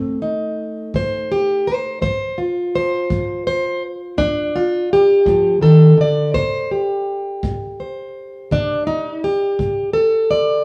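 An up-front, dark-toned plugged-in acoustic archtop guitar opens this laid-back, swaggering acoustic country blues fragment in a straight 12/8, fingerpicking the melody over a move from F7 to C5 in a lightly reverberant live room, while a tight, natural kick drum played with brushes sits low underneath from 0.9 to 9.8 seconds.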